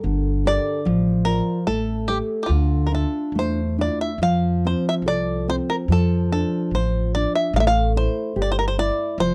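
A fingerpicked nylon-string guitar and a woody, pizzicato upright bass with a touch of tube saturation open this fado-style ballad, a passionate, longing excerpt in a rubato 2/4 at 73 BPM in D minor. A bright, twangy bluegrass banjo played with fingerpicks takes the melody from 0.5 s, its percussive attack sitting up front beside the warm classical guitar, before the harmony moves to F major at 4.2 s. Light reverb colors a dry, close recording with a 1970s studio character.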